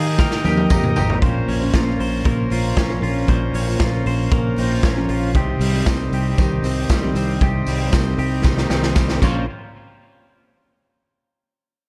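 A buzzy vintage combo organ fill opens this wistful, bittersweet jangly indie pop excerpt over a bright, twangy twelve-string electric guitar arpeggiating through spring reverb and delay, a full-bodied picked steel-string acoustic guitar in the background and a round, foam-muted fingered bass, as a gritty, saturated garage drum kit with a boomy kick and dark cymbals enters up front at 0.2 seconds with a fill, joined by a jingly tambourine that drops out and returns at 5.6 seconds, all within a dark production.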